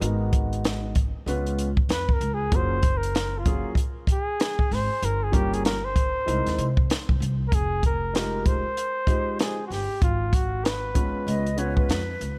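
A compact cocktail drum kit sets a swung 96 BPM groove in 4/4, its punchy kick and high-tuned snare sitting dry and up front in this mellow, smoky jazz-hop excerpt. An upright bass plucks woody, growly lines beneath, while a dark baby grand piano comps with long-sustained, vintage-toned chords moving from Abm9 through Db7 to Gbmaj9. At 1.9 seconds a breathy flugelhorn takes the lead with a jazz-style solo, its scooped notes, vibrato and smooth top carried on a tape echo. The harmony darkens through Gm7b5 and C7alt before settling onto Fm11 and Abm. A hollow, close-miked silver concert flute slips in at 11.3 seconds with a brief tongued second line as the chords return to Db7, and the whole ensemble sits in a studio reverb.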